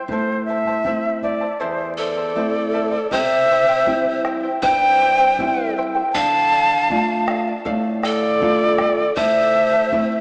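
An airy, end-blown cane quena with expressive vibrato sings up front through tape echo, over shimmering double-strung charango fingerpicking in the background, a deep classical nylon-string guitar with finger squeak and a round bombo; at 2.0 s a breathy, unsteady bamboo pan flute adds a second line with crisp chiff, and the whole earthy, melancholic Andean folk excerpt sits in a dreamy, reverb-soaked hall touched by vinyl crackle and small-speaker tone.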